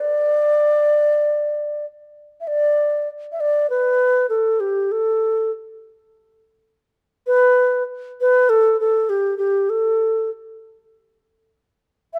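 This short Chinese traditional excerpt features a lone xiao, its end-blown bamboo voice carrying a festive yet pastoral mood. The pulse sits around 99 BPM in 4/4, though the line moves with a free, rubato feel in the D zhi mode, tuned to A4 = 444 Hz. The xiao plays alone from 0.0 to 12.2 seconds, ranging from G4 to E5 with a pure, mellow, straight tone, tongued notes and softly rolled-off highs. A new passage begins at 2.5 seconds and continues to the end of the clip. Close, detailed microphones keep the instrument up front, with only a light reverb around it.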